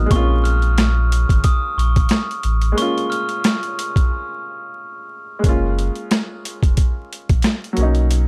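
A bell-like glockenspiel melody, struck with rubber mallets and carrying analog delay, opens this tough, gritty boom-bap hip-hop excerpt alongside a clear, woody upright piano and a round sine sub bass with transformer saturation, before the drums enter at 0.1 seconds. At 90 BPM in a swung 4/4, the compressed, pitched-down sampler kit sits up front with a thumpy kick, high-tuned snare, rim click and hi-hat, while the chords move from A#m7 to F#maj9 and Bmaj7 and a break arrives at 2.8 seconds. The glockenspiel stops at 4.1 seconds, and the dry, gritty hardware sound is dusted with vinyl crackle and studio reverb.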